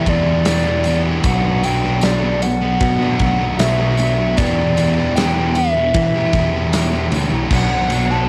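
A reedy FM lead carries the melody in this short, dreamy shoegaze and dream pop fragment, sustained and soft in attack, with vibrato, chorus, analog delay and a woody, full-bodied tone over a noise layer. Beneath it, a crunchy overdriven guitar picks a riff touched with reverse reverb. A dark fuzz guitar sits further back, and a growling fingered bass, bright, punchy and overdriven, stands out as the loudest part. A huge arena drum kit joins at 0.1 seconds from the background, with a punchy kick, medium-tuned snare and bright crash and ride cymbals pumping in a hall-like space. A jingly tambourine enters at 0.5 seconds, low in the mix. The wistful harmony drifts between Em7 and Bm, and a cassette haze colours the lead, both guitars and the drums in a dry home recording.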